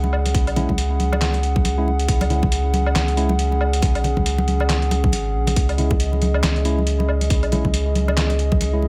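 A moderate spring reverb hangs over this short cut from a longer deep dubstep piece, lending its meditative, heavy mood a sense of space. At 138 BPM in 4/4 with a half-time feel and a 58% swing on the sixteenths, it rests on a single C# minor chord throughout. A saturated sub bass sits up front from the first moment, thick and triangle-toned with a fast attack, while a dark analog pad holds sustained chords above it, nasal and detuned with a slow attack, long release and chorus. A trip hop sampler-style kit of handclaps, hi-hat, snare drum and woodblock enters at 0.1 seconds, sounding pitched down, muffled and overdriven, and a tight, tape-warm electronic kick drum with studio reverb follows at 0.3 seconds. Damped congas with soft hands and a thin skin stay close and dry in the background. From 0.6 seconds a bright tine electric piano adds clean stabs, roughened by vintage 12-bit sampler grit and trailing dub echo.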